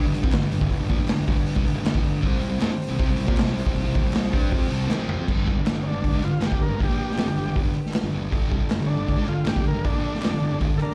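A rowdy, raw garage rock excerpt at 158 BPM in G major opens with a thick, double-tracked fuzz guitar riff up front, a growly, overdriven fingered bass in the background and reedy, lightly vibrato combo organ chords moving from G to C5, while a saturated, punchy garage drum kit and very quiet, crisp handclaps play along. A transistor organ fill from 4.5 s and a drum fill at 4.9 s lead into a new section at 5.3 s, where a buzzy, heavily vibrato overdriven combo organ takes the melody from 5.8 s. It sounds like a live gig heard through a club PA with light reverb.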